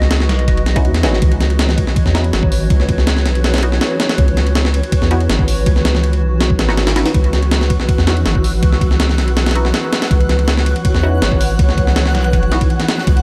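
A straight 4/4 breakbeat drives this raw, atmospheric drum and bass and jungle cut at 162 BPM in C# minor, its compressed sampler-style kit of thumpy kick, high-tuned snare, hi-hat and ride sitting up front over a deep, round, soft sub bass. Behind them a cloudy, evolving granular pad holds a mellow C#m11 chord with its own reverb, while a muted, detuned chord stab flickers in the background through phaser, analog chorus and dub echo. At 7.7 seconds a twinkling, sparkling granular texture with octave-up shimmer joins faintly, all within a dry, gritty hardware recording that has a digital ambience and is cut from a longer piece.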